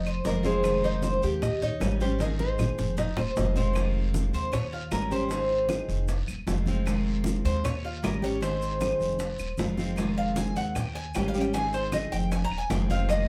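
A bright, metallic Cuban tres with doubled strings sits up front, taking a solo from 3.8 s after a drum fill, over a sultry, warm F minor groove in the Cuban son and guajira style at 154 BPM, cycling through Fm7, Eb7 and Ab. A dark, thumpy pizzicato upright bass anchors the low end alongside a picked dreadnought steel-string guitar with old strings, while a fingerpicked nylon-string guitar carries a brief melody that stops at 2.9 s. Congas, round low-tuned bongos, woody claves, a raspy guiro and grainy maracas fill out the percussion in a wet small room, the band playing live together in this cut from a longer piece.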